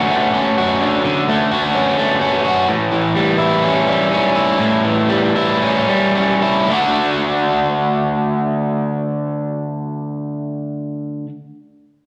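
Rock with a wistful, dreamy mood, this excerpt features a crunchy, overdriven electric guitar played alone and up front, picked and double-tracked over a Dmaj7 to A7 to D progression, slowing down from 2.7 to 6.7 seconds before a new section, all set in a wet stone-room reverb with the rough, tube-saturated feel of a rehearsal-room recording.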